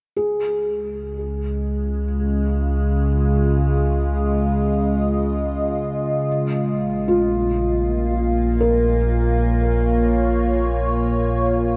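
Ambient piece in free time and D-flat major, serene and warm, cut from a longer work and set in a vast, echoing cathedral reverb with a 7.1 s decay. A felt-muted upright piano plays soft, intimate arpeggios through diffuse ambient delay from 0.2 s, alongside a round, deep analog bass entering at the same moment. At 0.8 s they are joined by an up-front evolving wavetable pad whose detuned, morphing sustained chords carry chorus and a filter sweep. The harmony moves from Dbadd9 to Bbm at 6.3 s.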